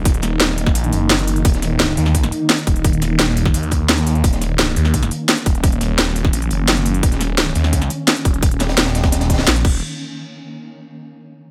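Dark and aggressive, this technical drum and bass cut drives in straight 4/4, led by a thick, swirling detuned saw bass that is phased, overdriven and sidechain-pumped, while a tense, nasal swarming drone holds sustained chords beneath a filter sweep, its granular texture bathed in its own reverb. Up front, a tight electronic kick and a layered drum and bass kit with a cracking snare, crisp hats and crash cymbal drive the groove, while a smooth, rolled-off acoustic breakbeat kit with a high-tuned snare sits in the background. The full arrangement runs to 9.8 seconds, when the chords give way to a brief closing stretch, all set in light reverb and studio ambience.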